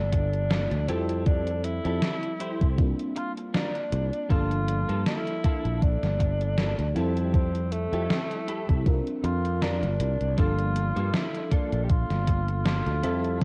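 A lightly swung sixteenth-note groove in four sets the pace, carried by a thumpy, tape-warm electronic kick that sits up front and a gated 80s digital drum machine whose hi-hat and gated-reverb snare enter at 0.1 s alongside the kick. This nostalgic, melancholic vaporwave fragment, cut from a longer piece, rests on a growly, bright fretless electric bass that sustains low and prominent beneath an FM electric piano layered with a soft pad, lush and dreamy with detuned shimmer, tremolo and analog chorus. A mellow tenor saxophone carries the melody from the first moment in a vintage, classical-style solo voice with gentle vibrato, trailed by tape echo. Tucked in the background, a clean, compressed electric guitar plays a picked riff coated in ensemble chorus and analog delay. The harmony drifts between Gm9, Fmaj9 and C9sus4, and the dry, close mix has the hazy character of a cassette tape.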